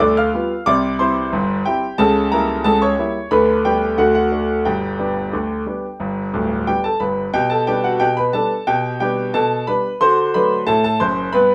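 A clear, worn grand piano sits up front and plays alone in this playful, lively ragtime excerpt. Its straight two-beat feel runs across a range from deep bass to bright treble, with chords moving through G7, C, C#dim7 and D before the second section arrives at 7.3 seconds. The natural tone carries a short, wet small-room reverb, giving the sound of a live performance in one room.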